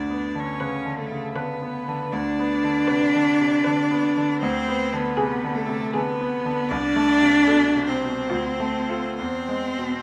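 A clear, up-front cello carries the second line beneath a rich, focused violin melody sung with vibrato, while a bright, brilliant grand piano accompanies and a distant viola with soft attack and portamento joins at 0.6 s. This melancholic, yearning fragment of a slow romantic piano quartet movement in rubato 3/4 sounds in a recital-hall reverb before it settles on an E chord at 9.2 s.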